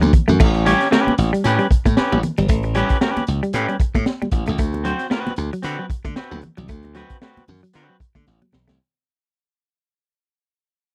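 Funk excerpt in A mixolydian at 114 BPM with a swung sixteenth feel, gritty and energetic, where a crunchy, saturated breakbeat kit with a punchy kick, high-tuned snare and dark cymbals drives a glassy, bright slap bass, a dark, clean semi-hollow guitar riff and damped, thick-skinned congas in the background, while a twangy guitar at the edge of break-up enters at 0.7 s over A9 and D6 chords, all in a dry, close 1970s-style studio sound that fades out from 0.4 s as a drum fill arrives at 8.3 s.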